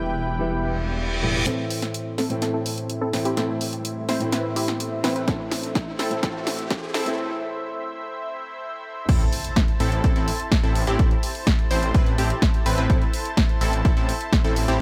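Bathed in light reverb, this euphoric, emotional slice of festival progressive house in A minor at 126 BPM opens on a dark, boxy concert grand piano and a lush, 12-bit-gritty unison pad over a thick, menacing detuned saw bass; a punchy, filtered supersaw stab, a tape-warm house drum kit and background riser and reverse cymbal effects then build toward a drop at 9.1 seconds, where the piano stops, the sidechain-pumped bass returns, an impact lands and an up-front electronic kick, present since 5.3 seconds, drives the groove.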